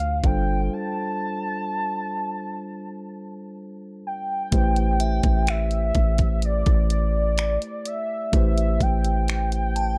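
A dry, echo-heavy mix frames this sensual, moody slice of contemporary R&B, with a velvety, chorused synth lead carrying the melody up front over a mellow tine electric piano and a deep, boomy 808-style bass. A trap kit of knocking kick, bright hi-hats and finger snaps sits forward, and a break runs from 0.7 to 4.5 seconds over a G9sus4 chord before the harmony settles on Am9. At 5.0 seconds a glassy, crystalline FM bell enters in the background, its chorus and delay adding a faint halo to the closing bars.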